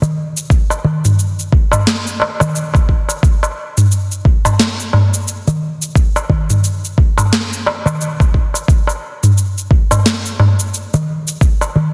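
Lightly reverberant and densely limited, this mystical, hypnotic downtempo passage, cut from a longer piece, rides a swung 4/4 groove built entirely from percussion. An electronic afro-pop kit with a sharp snare, shaker and toms carries a tape-warm sheen up front, while a crisp, high metal-shell darbuka played with soft hands is miked close and sits up front as well. From 0.5 seconds a gritty, thumpy sampler-style kick joins, overdriven, compressed and re-recorded in a small room.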